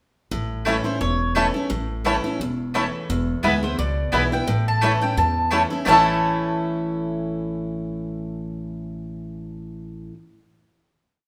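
Bluegrass in A major at a driving, lively 173 BPM with a swung feel, where a bright, up-front picked steel-string guitar plays alternating bass and strum with finger squeak, a thumpy gut-string upright bass walks two-beat root and fifth lines, a twangy banjo rolls and vamps off the beat, one mandolin chops the off-beats while another picks a woody fiddle tune in running eighth notes, briefly at 0.9 seconds and then steadily from 3.6 seconds, all set in a large studio reverb before settling on a final chord at 5.9 seconds.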